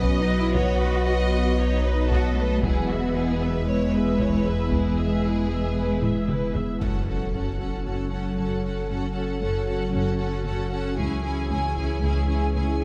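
A moderate scoring-stage reverb gives space to this brooding, tense cinematic cue, cut from a longer hybrid orchestral and electronic film score, where lush bowed violins and smooth, even violas sing with vibrato over expressive cellos, background double basses and a deep, round dub sub bass. Mellow French horns and a glassy, ethereal FM pad with ensemble chorus and its own reverb hold sustained chords in the background, while close, dry taiko struck with hard sticks drives the first half, moves into a fill and returns briefly at 11.0 seconds. At 6.8 seconds an electronic impact lands as the harmony moves to a minor chord.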